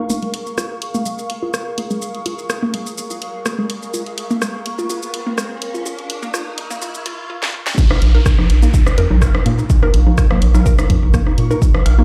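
Minimal techno with a quirky, hypnotic feel, this excerpt opens on a build-up in which a hollow, chorused square pluck riff with delay runs through a filter sweep over a cracking, layered garage drum kit of hi-hat, rim click, shaker and snare, while an ethereal, mellow, phased pad drifts above, a faint pulsing gated texture sits in the background and a riser climbs. A rubbery, dark square bass sounds briefly at the start, and after a short drum fill the drop lands at 7.8 seconds with a deep, tape-warm electronic kick up front, the bass bouncing back in at 8.0 seconds, and analog-flavoured electronic rim click, cowbell, bongos and congas echoing through delay. Sidechain pumping breathes through the bass, pad, pluck and gated texture, and the whole mix carries the stony reverb of a big sound system in a bare room.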